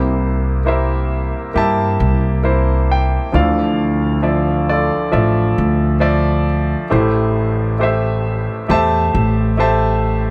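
A clear, intimate concert grand piano carries the melody with audible action noise and long sustain, up front over a woody, dark pizzicato upright bass in this melancholic, reflective acoustic folk-pop ballad at a slow 67 BPM in straight 4/4, moving through C7, Dmadd9 and Am7 in light reverb across a brief 10.3-second cut from a longer piece.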